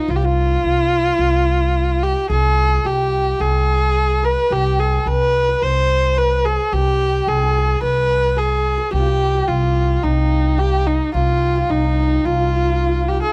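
A Persian modal ensemble piece in a soulful, longing mood, cut from a longer performance and moving in a straight, steady four. A single clear, focused kamancheh carries the melody up front, its bowed line shaded with vibrato and portamento, while a hammered santur shimmers and rings in the background as a second line, and a woody pizzicato upright bass holds a low C throughout. The sound is dry and close, like a 1970s studio recording with little reverb.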